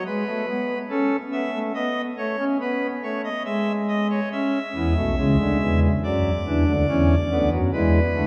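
A steady 3/4 pulse at 71 BPM moves with a straight, even feel through this lively, joyful passage, a baroque-style three-part fugue in A major cut from a longer piece. A pipe organ plays alone throughout, voiced on a cornet solo stop with a nasal, romantic character that sits up front, spanning from B1 up to E5. The harmony opens on E and moves through A/C#, B7 and E/G# before a second phrase begins at 4.3 seconds on A, passing through D/F# to an E7 at 6.9 seconds that leaves things open as the excerpt ends at 8.3 seconds. A cathedral reverb with a long 4.3-second decay surrounds the organ, giving the lines a resonant, spacious halo. The result is bright, buoyant church music, a short glimpse of contrapuntal celebration.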